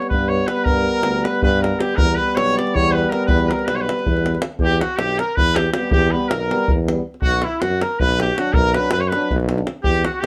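Balkan brass band folk in a 7/8 at 320 BPM (eighths), restless and fiery, cut from a longer piece. A clear, roomy trumpet with light vibrato carries the melody up front while a smoother-topped second trumpet plays a second line in the background, over the vintage-toned euphonium and French horn accompaniment, which stop at 9.6 and 9.7 seconds. A close-miked tuba anchors the bass beside a tight, dry davul, all in a small room as the chords move from G to Em and then Bm at 7.2 seconds.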